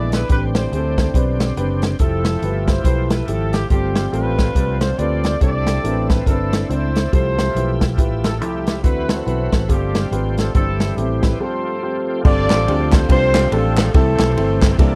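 Uptempo gospel at 141 BPM in C major, soulful and reverent, with a swung 4/4 feel as a distant, roomy horn section carries the melody over a woody upright piano and a round, punchy fingered electric bass, while a bright, lightly overdriven tonewheel organ holds sustained chords in the background through slow rotary speaker and chorus vibrato with audible key click. A swinging big-band drum kit sits up front with a punchy kick, medium-tuned snare, hi-hat, ride and crash, and after a break at 11.4 seconds a hollow group handclap joins in the background from 12.5 seconds. The dry, close 1970s-style studio sound carries light reverb, and this cut from a longer piece moves through extended chords like Am11, Fmaj9 and D13 before settling on C6.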